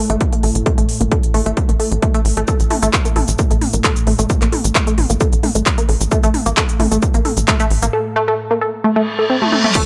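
Intense and relentless, this driving peak-time techno cut runs at 132 BPM in a straight 4/4, built on a heavy, up-front electronic kick and a tape-warm techno kit of smooth hats, handclaps, shaker, ride, crash and toms, with a tight, nasal sequencer bass pumping on A1 until 7.9 seconds, a detuned, mellow sequenced synth riff carrying chorus, tube saturation, tape echo and a filter sweep throughout, a deep, warbling, very quiet pad droning underneath, and a reverse cymbal and impact rising from 9.0 seconds into a closing drum fill at 9.4 seconds, all sitting in light reverb.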